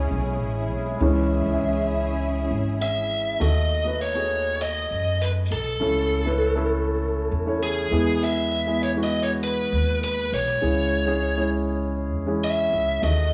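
This pop piece in C# minor moves at a straight 100 BPM in 4/4, with a dramatic, earnest mood and the worn character of a home cassette recording in a moderate spring reverb. An up-front concert grand piano with deep bass carries the accompaniment throughout, and a woody, thumpy upright bass on gut strings plays pizzicato in the low register underneath. A dark bowed string section with light vibrato and a soft attack holds sustained chords at the start, then falls away at 3.4 s, as the piano's solo passage from 1.0 s comes to a close. A biting, overdriven electric lead guitar, picked and placed up front, enters at 2.8 s to carry the melody in a narrow upper range. The harmony moves from C# minor through a diminished chord, A over C#, and E before returning home, and the excerpt is cut from a longer piece.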